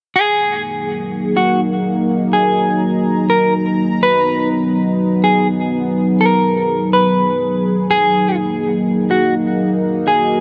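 A clean electric guitar and a sweeping, resonant pad both enter at 0.2 s in this floating, dreamy hip hop excerpt, set in F# major at 124 BPM in 4/4 with a half-time feel. The pad holds sustained chords from F#3 to A#5, its evolving, full-bodied tone blending sawtooth and sine with a sub octave, a slow attack, a filter swell and a chorus shimmer that sits up front. Over it the fingered guitar carries a dark, clean melody between F#4 and B4, softened by a low-pass filter and trailed by digital delay. The harmony moves from F#69 to Bmaj7 at 4.0 s and back to F#69 at 7.9 s before both parts stop at 10.4 s. A huge ambient reverb with a long 4.9-second tail wraps the dark, warm production.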